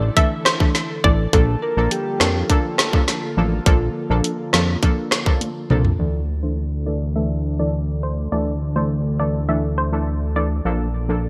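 Tough and sultry, this dancehall excerpt in D minor moves at 103 BPM, with up-front, tight electronic drums (woody snare, gated reverb) playing until a fill that ends them at 6.0 s. A fat, sawtooth-edged analog bass and punchy, brassy synth stabs anchor the groove, while a breathy pad pumps softly in the background, a hollow, bouncy square pluck carries the melody, and a round, octave-layered lead with vibrato and digital delay adds a second line from 1.3 s. The bright 1980s-style digital production has light reverb, and a filter sweep runs from 6.0 s to the close.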